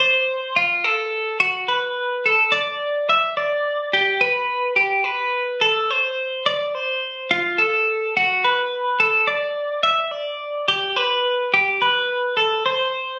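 A bright, clean twelve-string electric guitar plays a playful, intricate solo rock line up front in 6/8 at 71 BPM, its picked, compressed tone set in light studio reverb with a phone-in-the-room character across this 13.2-second excerpt cut from a longer piece.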